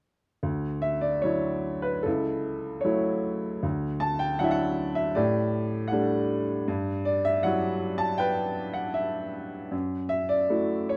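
A clear baby grand piano opens at 0.4 seconds, playing alone in a lyrical classical style in D major. The mood is warm and peaceful. The tempo sits around 77 BPM in 4/4, and the rubato gives the beats an uneven, breathing feel. The piano sounds boxy and up front, ranging from C#2 to A5, while light reverb and a dark production soften the surroundings. Its harmony moves through gentle colors, from Dadd9 and F#m7/C# to A7sus4 and Emadd9/G, before settling on F#m7 at 9.7 seconds as this fragment of a longer piece closes at 11.0 seconds.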